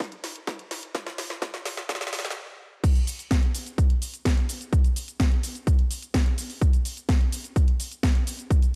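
A dry, high-pass filtered sound frames this triumphant, uplifting EDM excerpt at 127 BPM, where a punchy, overdriven electronic kick sits up front and a layered house kit of crash, hi-hat, shaker and cracking snare builds through a drum fill, halts briefly at 2.4 seconds, then crashes into the drop at 2.8 seconds.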